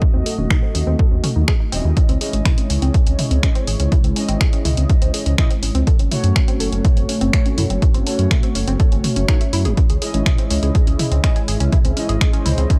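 Melancholic and dark, this excerpt of melodic techno moves at 123 BPM in a straight 4/4, set in C# harmonic minor, with chords shifting from D#dim to C#madd9, F#m and back to C#madd9. A punchy, up-front analog kick drives the groove, joined at 0.3 seconds by a drum machine playing finger snaps, hi-hat and toms. Beneath it, a menacing detuned saw bass enters at 0.1 seconds with an evolving filter swell, saturated grit and sidechain pumping. A deep, moody pad holds sustained chords with a slow attack and chorus, while a tight, driving sequenced synth spins arpeggios through phaser and tape echo under a continuous filter sweep. Bold, fat synth brass stabs add vibrato and a cassette-tape tint, and the whole mix sits dry and gritty with transformer saturation and cassette coloring.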